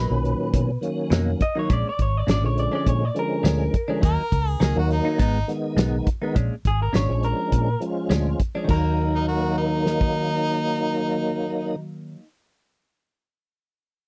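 Soulful and brooding, this short cut from a longer piece is a straight-eighth soul blues in Eb minor at 103 BPM, with a light sixteenth-note swing and a dry, close 1970s-style studio sound. A slightly broken-up, lo-fi electric guitar through a small old amp carries the melody, while a bright, twangy clean guitar recorded direct adds compressed stabs colored by phaser. Underneath, a dark, round, foam-muted fingered bass holds the low end, and a full, up-front tonewheel organ fills in the harmony with light overdrive, chorus vibrato and a slow rotary speaker. The soul drum kit, with its fat snare, tight kick, dark cymbals and tambourine, sits up front with a gritty vintage sampler texture and drops out at 10.1 seconds. A punchy harmonica with vibrato and scooped notes steps in as a second line at 4.1 seconds and returns at 9.2 seconds, after the harmony has settled back on Eb minor from Bmaj7, Bb7#9 and Abm.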